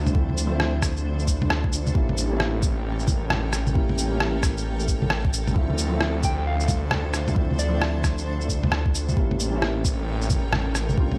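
Vinyl crackle and a digital ambience with light reverb surround this melancholic, nocturnal future garage excerpt, cut from a longer piece and built on a swung sixteenth-note feel. A soft, muted felt upright piano carries the accompaniment with vintage 12-bit sampler grit, delay and sidechain pumping, while a cloudy, blurred granular pad holds sustained chords in its own built-in reverb and pumps along with it. Underneath, an up-front, menacing detuned saw bass moves with filter swells and tube saturation. Soon after the start at 0.1 seconds, a soft, tape-toned electronic kick enters alongside muffled, pitched-down electronic bongos, shaker, cabasa and rim click, all treated with studio reverb. The harmony alternates between Dm7 and A7b9, and from 6.2 to 8.0 seconds a gentle, round FM synth lead with a sub octave, chorus and delay adds a brief keys-like melody.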